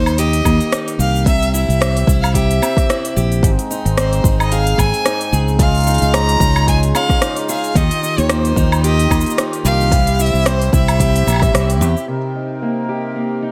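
Light reverb lends this delicate folktronica excerpt a gentle sense of space, and its 4/4 groove carries a lightly swung sixteenth-note feel. A bright parlour steel-string guitar picks arpeggios through a low-pass filter, while a clear, bowed violin carries the melody with smooth vibrato and a digital delay. A fingered electric bass sits direct and up front. It is joined by an overdriven electronic kick with a deep tone and by an organic electronic kit of smooth hi-hat, rim click, shaker and woodblock, both re-recorded in a large room. At 3.4 seconds a reedy, breathing harmonium enters with sustained chords from a boxy small room, as the harmony moves from Eb and C through Ab, Dbadd9 and Ebadd9. After a band accent at 11.5 seconds, the guitar and harmonium carry a brief closing passage over Cm7, with a filter sweep on the guitar from 12.1 seconds.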